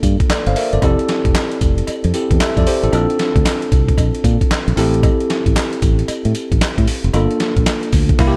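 A gritty, compressed sampler-style drum kit drives this short, flirty R&B cut in a new jack swing style, with a thumpy kick, a medium-tuned snare, handclaps, hi-hat, tambourine and crash cymbal, all re-recorded in a large room and placed up front. The groove moves at 114 BPM in 4/4 with a swung 16th-note feel, and the tuning sits slightly sharp at A4 = 441 Hz. A bell-like tine electric piano, bright and clean, shares the foreground, voicing chords from Gm7 to Fmaj7, Bbmaj7 and Am7 before returning to a rootless Gm7. Beneath it, a fingered electric bass adds a dark, round low end, and a metallic cowbell sits in the background from 0.3 to 7.8 seconds in its own small-room space. The mix is dry and upbeat, closing on a full-band accent at 8.2 seconds.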